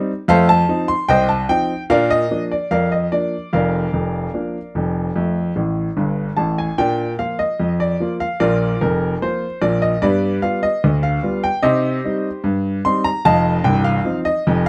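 The recording has a dark production with a moderate studio reverb that gives the room a modest halo. A solo grand piano sits up front with a clear, intimate, natural tone, and the clatter of its action is audible under the notes. This is jaunty, playful ragtime in 2/4 at 74 BPM, with a straight feel in B-flat major, and the piano spans the keyboard from deep C1 up to C6. The harmony moves through F7, Bb/F, F and Bb, then on to G7, Cm and a closing F5. A short piano fill arrives at 5.6 seconds, and the passage runs to 14.7 seconds as a cut from a longer piece.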